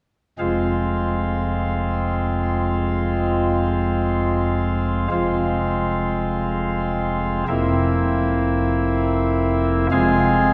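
A pipe organ on a nasal cornet stop carries this dark, solemn chorale-style passage in F minor, playing solo in free time from 0.4 to 10.5 seconds across a range from F1 to Ab4, with a baroque voicing and audible chiff. The harmony rests on F minor, moves to C7 over F at 7.5 seconds and settles back on F minor at 9.9 seconds. The organ sits up front, framed by a wet church reverb with a long 2.7-second decay that places the listener further back in the room, in a brief section cut from a longer piece.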